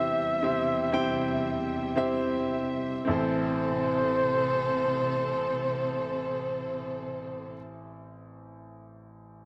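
A breathy, dark flugelhorn carries the melody up front, its close-miked, whispered tone marked by vibrato, soft attacks and scooped notes in an intimate jazz style. Alongside it, a warm baby grand piano, also up front, accompanies with a natural, long sustain, and a lush bowed string section holds sustained chords with expressive vibrato, portamento and a smooth top. This melancholic, longing pop excerpt in A minor moves at a slow 52-63 BPM in 4/4, slowing through the opening C/E chord before settling on A minor at 3.1 seconds. Light small-room reverb surrounds it all, and the piano plays on by itself from 7.6 seconds to 9.5 seconds.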